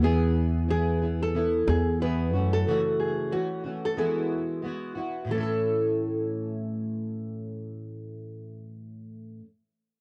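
A fingerpicked nylon-string guitar carries the melody in this sunny, easy-going pop excerpt, its classical, full-bodied tone coloured by cassette tape and a touch of finger squeak. Beneath it, a plugged-in jumbo steel-string acoustic guitar is fingerpicked and double-tracked, sitting up front with a warm, full-bodied tone as it supplies the accompaniment. A woody, dark upright bass, played pizzicato on steel strings and thickened by transformer saturation, anchors the opening and drops out at 2.6 seconds. The tune moves at 91 BPM in 4/4 with a gentle 16th-note swing in A major, the harmony passing through E, F#m7 and Eadd9 before settling on A as a new section begins at 5.3 seconds. The small-room ambience and home-cassette sound, with its softened top end, give the piece an intimate, homespun feel.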